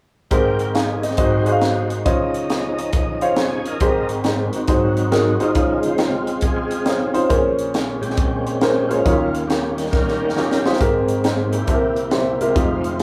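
Swinging eighths at 137 BPM in 4/4 drive this jubilant, reverent uptempo gospel passage in Ab major, where a crisp drum kit with a high-tuned snare and punchy kick and a clear, short-sustained grand piano back a gritty, overdriven tonewheel organ that holds thick chords through a slow rotary speaker with chorus vibrato and key click, plays a fill at 2.9 seconds and takes a solo from 3.8 seconds over changes moving through Bbm9 and Eb9, while the drums add a fill at 9.9 seconds, the band captured playing live together in one room with moderate studio ambience.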